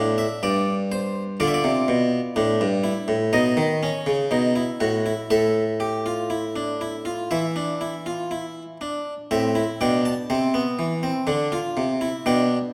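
In a straight, even 4/4, this baroque-style three-part fugue for solo harpsichord moves with a driving yet contemplative character, its Flemish-style instrument heard up front with a plucked, round tone from a single set of strings. The harpsichord spans from low G2 to A5 and carries the music alone through this short cut from a longer piece, moving into a new section at 9.3 seconds. A wet recital-hall reverb surrounds the playing with a lingering sense of space.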